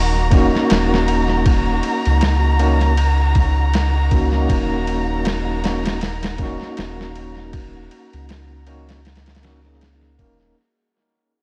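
This brooding, melancholic trip hop fragment moves at 79 BPM in 4/4, with a lazy swing on the sixteenths, and is cut from a longer piece that fades out across its full 10.6 seconds. A sampler-style drum kit enters at 0.3 seconds with a thumpy, muffled kick, a medium-tuned snare and ride cymbal, pitched down, compressed and touched with tape echo so it sits up front with a small-room character. Underneath, a round analog bass blending sawtooth and sine holds deep, sustained notes from Eb1 to Db2, its tube saturation giving it a warm, dark weight. An overdriven tine electric piano played through a combo amp supplies gritty accompaniment with tremolo and tape echo, while a dark studio violin section sustains bowed chords with vibrato and portamento over a static Ebm7 in Eb minor. A very quiet, breathy wind-like noise texture hovers on Gb4, and the whole echo-heavy mix carries vinyl crackle and a light digital ambience.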